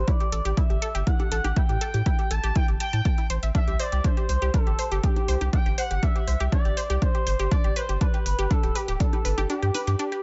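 Dry and dull above 7.6 kHz, this bittersweet, driving progressive house excerpt at 121 BPM in 4/4 sets a smooth, expressive sawtooth lead with vibrato, portamento, lush chorus and digital delay over a round, deep analog bass pumping under the sidechain, detuned unison pluck arpeggios with their own delay and pumping, overdriven metallic hi-hats, a punchy overdriven kick up front that stops at 9.1 s, and brief background conga touches from 1.2 s, across chords of A7(no3), C5 and G5.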